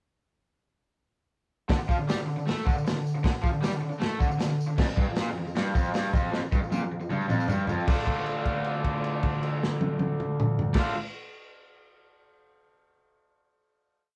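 A straight, stomping garage groove from a crunchy, saturated breakbeat kit, with a tight kick, dark cymbals and a rolled-off top, drives this short, gritty, swaggering garage rock piece. It sits up front beside a bright, double-tracked overdriven guitar playing a picked single-note riff, while a jingly, close tambourine plays its pattern in the background until 8.1 seconds. After a drum fill from 6.3 seconds, the band lands on a final chord held from 7.9 seconds, all captured live in one room onto cassette tape.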